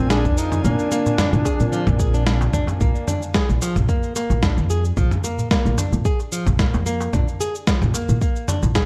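Over a lightly swung 111 BPM groove from a gritty, compressed sampler-style kit with cabasa, snare and toms, a deep overdriven electronic kick and a crisp metal-shell darbuka in the background, this earthy, peaceful organic downtempo fragment pairs a growly, woody pizzicato upright bass with a fingerpicked flamenco guitar with finger squeak and digital delay, while a mellow duduk with vibrato, scooped notes and delay sings until 2.2 s and muted felt-like synth keys and a breathy pad, both with chorus and sidechain pumping, hold a Bb7 until a drum fill carries the music into Bb5 at 2.8 s, in a dark production with light reverb and small-room ambience.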